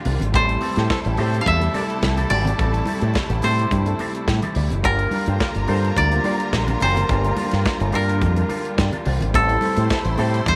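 A bright, up-front fingered electric bass with an envelope filter drives this glamorous disco groove beneath a dry, woody koto melody played with fingerpicks, while a very quiet, dark and scooped envelope-filtered electric guitar, an intimate grand piano with audible action noise and a fill at 8.5 seconds, clear sustained string chords, a lush violin second line, tight horn stabs, a studio drum kit with a punchy kick and medium-tuned snare, and thin-skinned congas struck with hard hands all sit in light reverb as the harmony moves between Am7 and Gm7.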